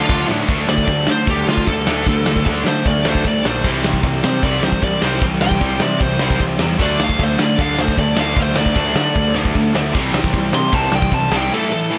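Angry and urgent, this punk rock excerpt at 152 BPM features a drum fill at 0.3 seconds from an up-front acoustic kit with a tight kick, medium-tuned snare, crash and ride in a bright stone room. A dark, high-gain lead guitar then takes a solo from 0.5 seconds through distortion and digital delay over alternating D5 and C chords. Beneath it sit three bright rhythm guitars playing riffs: a very quiet overdriven one, a very quiet distorted and compressed one, and a double-tracked high-gain part in the background. A growly, fuzz-laden picked bass drives the low end, all under light reverb.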